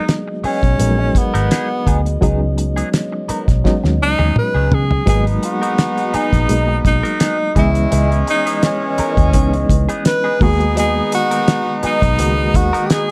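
Bittersweet and silky, this lush 1970s-style soul excerpt in G# minor moves at a relaxed 84 BPM with a gentle swing, as a breathy, intimate tenor saxophone carries the melody up front with slapback echo and solos through the first 5.1 seconds, over a barky, lightly overdriven electric piano with fast tremolo, a dark French horn section holding chords in the background, a clean, direct-recorded electric guitar riff through wah, a thuddy cloth-damped drum kit whose fill at 3.6 seconds leads into the second section, a round foam-muted fingered bass, and, from 5.1 seconds, a smooth jazz-style horn section adding stabs.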